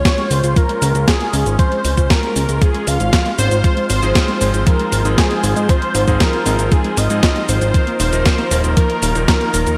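Playful and romantic, this roughly ten-second excerpt of italo disco moves at 117 BPM in Ab major, with a thick, detuned unison lead carrying the melody through cassette-tape colour and delay over veiled, con sordino studio strings and a fat, nasal analog bass sitting up front. A thumpy, overdriven electronic kick drives the beat alongside a clean 12-bit drum machine of cabasa, hi-hat and snare treated with gated reverb, while a warbling, lo-fi pluck spins chorused arpeggios in the background. At 4.0 seconds a bright, clangy electric grand piano adds gritty stabs, all set in a lush hall reverb with bright 1980s-style digital production over chords moving from Db to Ab6 and Ebsus2.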